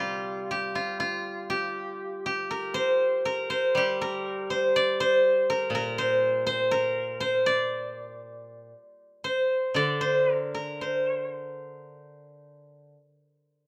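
A silvery, ringing steel-string zither, plucked with fingerpicks and placed up front in a moderate studio reverb, plays alone in a longing, contemplative Chinese traditional passage in G yu mode, drifting in a free rubato around 56-62 BPM until it stops at 12.9 seconds in this fragment of a longer piece.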